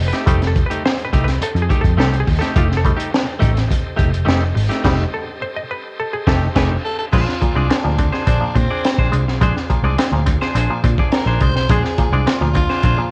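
Funk excerpt at 105 BPM with a strutting, playful feel, built on a foam-muted, punchy picked bass and a crunchy, saturated breakbeat kit with a high-tuned snare and dark cymbals, while a hollow, nasal overdriven clav takes a solo of stabs over F9 until 7.1 seconds, a twangy clean guitar accompanies, a gritty slow-rotary organ with key click sustains chords in the background, and a raspy, growling tenor saxophone enters with the melody at 6.6 seconds, just before the harmony moves to Bb9, all carrying a cassette home-recording tone in a small room.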